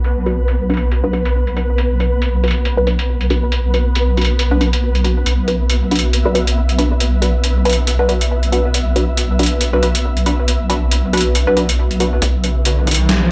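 A dark, cavernous haze of light reverb opens this deep dubstep excerpt in B minor, set at 138 BPM in a swung half-time feel, where an up-front, deep wobble bass with a sine-like, detuned chorus sheen sits under a muffled, pitched-down trip hop sampler kit of overdriven hi-hat and snare with a small-room character. Muted, detuned chord stabs with a filter pluck, phaser and dub echo carry a filter sweep through the first 12.2 seconds, while a flickering, granular texture hovers above on a single B minor chord. At 12.2 seconds a build-up begins as a punchy, overdriven electronic kick enters in the background, joined by a distant riser at 12.5 seconds.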